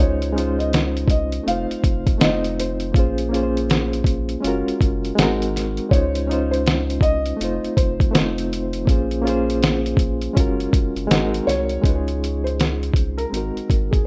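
Lo-fi hip hop in Db major at 81 BPM, this cosy, mellow fragment of a longer piece rolls along in 4/4 with a swung sixteenth-note feel. A felt-muted upright piano carries the melody, its soft, boxy tone marked by audible action noise and a short sustain, with an analog delay trailing each phrase. Up front, a reedy electric piano plays the accompaniment through a fast tremolo, its clean sound colored by cassette tape and built-in speakers. A deep, round sine sub bass holds down the low end, while a compressed, pitched-down, muffled sampler-style drum kit with a thumpy kick, medium-tuned snare and hi-hat sits forward in the mix. The chords cycle through Dbmaj7, F7, Bbm9, Gbmaj7 and Ab7 before a brief new section at 11.8 seconds returns to Dbmaj7 and closes on an Ab9, all wrapped in light reverb and digital ambience for a rough home-demo feel.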